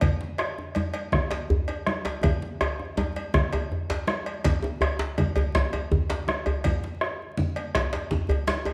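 Rolling in a straight 12/8, this festive, powerful West African drum ensemble fragment, cut from a longer piece, sets a round, vintage bombo up front alongside bright, hard-handed congas, a metallic, saturated cowbell and a deep, dry djembe tucked in the background, while a second, medium-tuned djembe joins up front at 1.3 s and a drum fill runs from 2.2 to 4.4 s, the whole set in a moderate recital-hall reverb beneath a layer of vinyl crackle.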